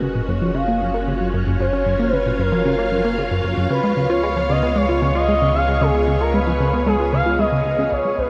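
Drenched in a huge, wet ambient reverb with a very long decay, this brief cut from a longer piece of sequencer-driven space music feels hypnotic and cosmic, in a straight 4/4 pulse. An expressive portamento lead carries the melody from start to finish, its smooth, mellow sawtooth tone gliding between notes with vibrato and dressed in lush chorus, shimmer reverb and tape echo. Beneath it, a vintage string machine holds full-ensemble chords with a slow attack and long release, its sub-octave body thickened by ensemble chorus and shimmer reverb. A punchy, funky analog bass riff plucks along in dark sawtooth and pulse-wave tones, each note snapping open through a filter with a moving notch and decaying into tape echo. A deep, round sine sub bass sustains underneath, while the harmony moves from F#maj7 to C#7 at 3.7 seconds.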